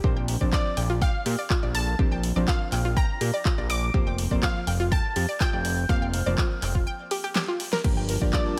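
Progressive house with a driving, dreamy mood, this short excerpt layers a tape-warm electronic kick and a pop kit of fat snare, bright hats, handclaps and crash under a thick, detuned analog bass, round chorused analog pluck arpeggios, deep mellow chord stabs, a lush unison pluck melody and a pure FM bell line, all moving from Bbadd9 to Fsus4 before a break at 6.9 s with a drum fill, and a shimmering ambient pad arriving only at 8.2 s on Gm7.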